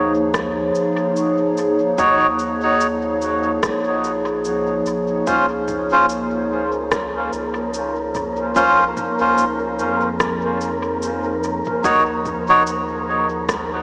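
A reedy, nasal melodica sits up front with filtered, echoing stabs from 2.0 s over a warbly, detuned tape-like pad and a soft, round dub sub bass, while a punchy overdriven kick in the background and a tape-warm electronic kit of rim clicks, shakers and toms move at 73 BPM with a 16th-note swing through Eb7(no3), Dbmaj7 and Ebm7, an airy wind-like noise texture joining at 6.2 s to deepen this meditative ambient dub excerpt, dreamy and soaked in huge reverb with a small-speaker sound.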